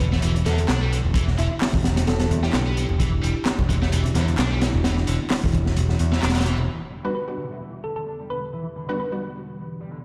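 A crunchy, saturated breakbeat kit with a high-tuned snare and tight kick drives this gritty, energetic breakbeat piece, joined by an up-front picked electric bass, a bright, scooped high-gain guitar riff with dub echo, very quiet congas, overdriven electronic handclaps in the background, a round, tine-like thumb-piano synth pluck and a deep, moody analog pad with phaser, sampler grit and sidechain pumping, until the kit drops away at 6.6 seconds and the bass at 6.7 seconds, and a bold, punchy orchestra-hit-like synth stab enters at 7.0 seconds, the whole mix ringing in a stone room.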